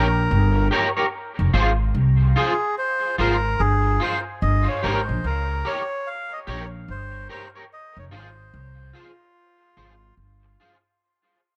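A slow, swung 73 BPM groove in 4/4 sets up this spacious, meditative dub reggae fragment in F minor, where a woody pizzicato upright bass sits prominently beneath the harmony as it moves between Gdim and Fm. A twangy, slightly broken-up electric guitar, thickened by ensemble chorus and dub echo, accompanies a reedy, breathy melodica that carries the melody through its own dub echo until it drops out at 10.1 seconds. Light reverb and a small-room ambience surround the parts as the whole 11-second clip fades out.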